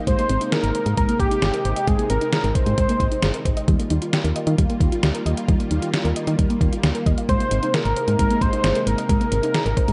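A straight 4/4 groove from a detuned 8-bit digital drum machine drives this wistful, nostalgic synth-pop excerpt, its thumpy kick, medium-tuned snare and hi-hat sitting up front with a tape-warmed, small-room character. Underneath, a solid FM bass plays punchy, round and dark, with a fast attack and a decaying tail. A string machine voiced as violas holds sustained chords with an evolving, warbling vintage tone thickened by ensemble chorus, while a soft, full-bodied pluck runs arpeggios in the background through chorus and tape echo. A thick, nasal unison lead carries the melody up front with vibrato and tape echo, dropping out at 3.4 seconds and returning at 7.3 seconds. The harmony moves from Abadd9 to Ebadd9 and back, all wrapped in light reverb with a softened, rolled-off top end.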